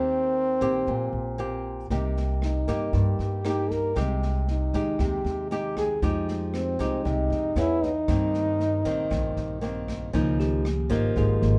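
Light reverb surrounds this breezy, romantic bossa nova excerpt in Eb major at 117 BPM, where an up-front mellow trombone sings the melody with vibrato and scooped notes over fingerpicked nylon-string guitar and a woody, growly pizzicato upright bass. A dark, smooth acoustic drum kit with a boomy kick, rim click and snare joins at 1.9 seconds as the chords move through Cm7, Abmaj7/C and Fm9. At 10.1 seconds the trombone has dropped out and a bright, bell-like tine electric piano takes a short solo over a Db69 chord.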